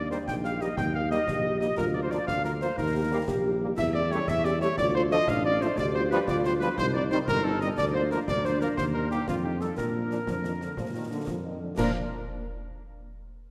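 A military-style march for wind band in 6/8 at 120 BPM, this rousing, proud passage in Bb major is cut from a longer piece. Up front, a solo cornet carries the melody with a light vibrato and classical poise, while a mellow woodwind section adds a second line in the background with its own vibrato. A dark euphonium sings a second line behind them and drops out at 11.5 seconds, and a tight French horn section, very quiet with a smooth top, fills in accompaniment. A trombone section holds sustained chords with soft attacks and light vibrato, and a solo tuba, dusky and up front, anchors the bass from low G1. Concert snare, bass drum and clash cymbals with dark cymbals sound close and dry, set against the lush 2.5-second concert hall reverb, as the harmony moves through Eb, A7/E and G7/D before an F9 resolves to Bb near the 9.8-second mark.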